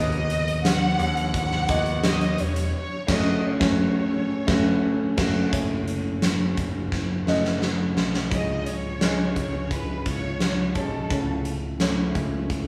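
Driving and bittersweet, this piano-driven pop excerpt moves at 86 BPM in a straight 4/4, cut from a longer piece and heard in a moderate large studio reverb with the band playing live in one room. A clear upright piano carries the accompaniment throughout, its woody, boxy tone close and intimate, with audible action noise. Beneath it, a picked electric bass sits bright and direct, while a huge arena drum kit, entering at 0.1 seconds, stands up front with a punchy kick, fat snare, hi-hat and gleaming crash cymbals. A lush, distant violin section carries the melody with expressive vibrato until 11.4 seconds. The band hits an accent from 2.7 to 5.5 seconds, a drum fill runs from 6.9 to 8.3 seconds, and the harmony moves from B/D# through F#m to C#sus2 and finally A/C#.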